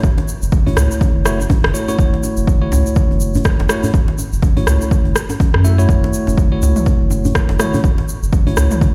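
Afro house at 123 BPM in F# minor pentatonic, this earthy, driving excerpt swings on a single F#m7 chord as an overdriven, punchy electronic kick sits up front over a round, nasal analog bass with sidechain pumping, a grainy egg shaker, a close djembe with metal rattles set in the background, an overdriven deep house kit adding rim clicks and toms from 0.8 seconds, and bell-like tine electric piano stabs with tape echo and sidechain pumping entering at 0.7 seconds, all heard through large studio reverb as if on a big sound system in a bare room.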